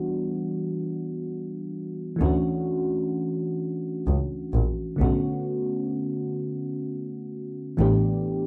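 A mellow FM electric piano opens this slow, yearning six-eight R&B fragment in B minor at 43 BPM, its round, warbling chorus-treated tone carrying a soft noise layer through the chords Em9, Dmaj9, Bm9 and A9sus4. At 2.2 seconds a bowed double bass enters in a low register, nasal and reedy with a gut-string, period-style character, and plays until 7.9 seconds. The dry, close recording has a 1970s studio feel and a small room ambience, lending the late-night mood an intimate, vintage cast.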